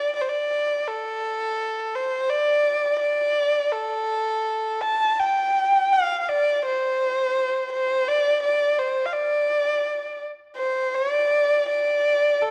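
Tender and graceful, this short passage of Chinese traditional music, cut from a longer piece, is carried by a single bowed erhu playing solo from 0.0 to 12.5 seconds. The erhu sits up front with a rich, intimate tone, heard close, and its line moves in a free, rubato feel over a 2/4 metre. Light vibrato, a soft attack and gliding portamento give the phrases their delicate, singing quality, ranging from A4 up to A5. A wet recital hall reverb surrounds the instrument, and the production leans dark and warm. Near 10.9 seconds the music turns to a new section for its final moments.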